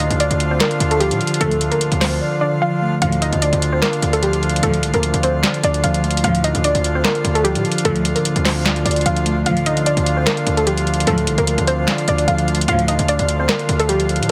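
A half-time trap groove at 149 BPM in D minor is driven by a booming, dry analog drum machine with a tonal snare, metallic hi-hats and handclaps up front, over a heavy, saturated 808-style bass; the drums drop out from 2.2 to 3.0 seconds and the kick briefly cuts at 9.5 seconds. A warbly, dusty, detuned lo-fi pluck with chorus and tape echo carries the dark, melancholic melody, backed by a mellow tine electric piano, reedy accordion chords and soft, sul tasto chamber string stabs in the background that stop at 13.0 seconds. This excerpt from a longer piece has a digital ambience and a heavily compressed, radio-like sound.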